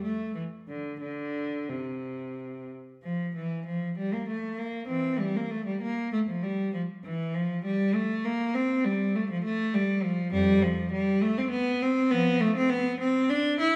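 A lone bowed cello, clear and smooth with vibrato, carries this flowing, radiant baroque-style suite movement in a rubato 3/4 at 86-103 BPM, moving from C major into F major at 3.0 seconds and back to C major at 10.3 seconds, all bathed in the lingering reverb of a recital hall in this short section cut from a longer piece.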